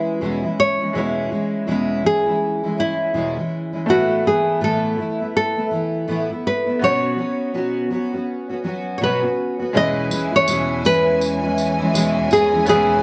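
This sunny, easy-going acoustic pop excerpt opens with a fingerpicked nylon-string guitar carrying the melody up front in a classical voice. Alongside it from the start, a double-tracked, fingerpicked steel-string dreadnought guitar holds the accompaniment, and a bright upright piano sits in the background, sounding worn and woody, slightly detuned, with audible action noise. At 82 BPM in 4/4 with a gentle sixteenth-note swing, the music sits in E major and moves through E6, Asus2 and Bsus2 before returning to E6. At 9.8 seconds a lush, close studio string section enters with bowed, sustained chords full of vibrato. A jingly tambourine follows at 10.1 seconds, sounding as if it was played in a small room. A moderate studio reverb gives the whole blend a sense of space.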